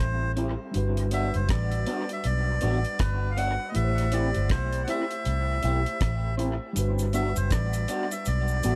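A round, punchy muted electric bass sits up front in this smooth, tender lovers rock reggae excerpt, as a reedy, breathy melodica carries the tune through tape echo over a mellow tine electric piano with dub echo, cycling between Am7 and Gmaj7, while a slightly broken-up, lo-fi guitar adds phased stabs and a dark, dry drum kit with a tight kick enters at 0.4 s, and a faint cabasa joins in the background at 6.8 s.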